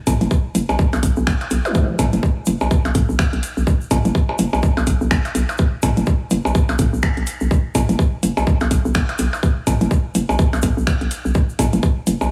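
A hollow, knocking FM bass grounds this cool, sparse minimal techno excerpt. Its punchy, bouncy notes sit low between F#1 and B1 with a fast attack and a decaying tail, thickened by tube saturation and sidechain pumping. A tight, layered electronic kick sits up front with a tape-warm tone, driving a 4/4 groove at 125 BPM with a 59% swing on the sixteenths. Behind it, a booming analog drum machine adds finger snaps and metallic hi-hats, overdriven and re-recorded in a small room, while overdriven electronic toms and percussion blips trail into a diffuse ambient delay. A grainy, bright egg shaker rustles close yet in the background, and a brief electronic zap flicks past at 1.7 seconds. Light reverb and digital small-room ambience frame the cut, which holds a single section throughout its 12.3 seconds.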